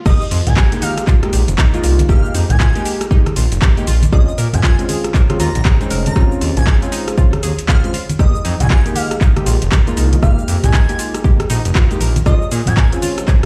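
A deep, overdriven electronic kick sits up front in this warm, smooth deep house excerpt at 118 BPM in F minor, swung on the sixteenths, with an overdriven kit of metallic hats, handclaps, rim click, shaker and crash, plus close acoustic congas pumping in the background, alongside a saturated, pumping sawtooth-and-square synth bass. Mellow chord stabs with chorus and tape echo cycle through Fm11, Bbm9 and Eb13sus4, while a round analog pluck with a bright filter sweep plays arpeggios in the background and an airy, dreamy lead with vibrato and portamento carries the melody until 12.9 seconds. The whole drop plays as if through a big sound system in a bare room, bathed in large studio reverb.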